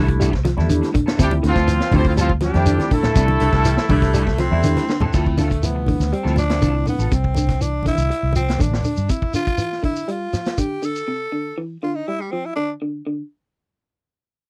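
Funky and defiant, this dry, close afrobeat excerpt at 121 BPM sets a barky tine electric piano with phaser, a lo-fi guitar picking arpeggios, a background guitar at the edge of break-up with ensemble chorus on stabs, a round, punchy muted bass, a gritty vintage drum kit with dark cymbals, grainy shekere and low-tuned congas under a distant horn section, a clear trumpet and a raspy baritone saxophone, before a growling tenor saxophone takes an up-front solo from 5.1 seconds over a C69 chord.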